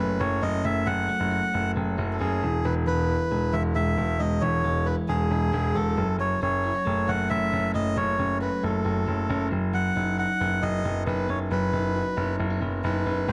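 A reedy, breathy melodica carries the melody from the opening, joined throughout by an electric guitar on the edge of break-up picking compressed arpeggios and a clear concert grand piano holding down the bass with deep, long-sustaining notes and audible action noise. This is nostalgic, breezy jangly indie pop in E major at 135 BPM, a short cut from a longer piece, moving through F#m, E and B/F# with a brief opening section giving way to a longer second one at 2.6 seconds. The nasal, close-miked melodica and the polished piano sit up front in a small room, within a dark production.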